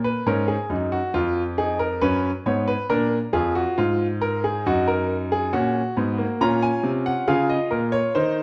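In a straight 4/4 at 68 BPM, this brief 8.4-second fragment of a baroque-style four-part classical fugue moves with a driving yet contemplative feel, as a solo grand piano, clear, natural and up front, ranges from F2 to Bb5 through Ebm, Fm7b5, Bb7, Ebm/Gb and Bbm, set in a moderate recital-hall reverb within a dark production.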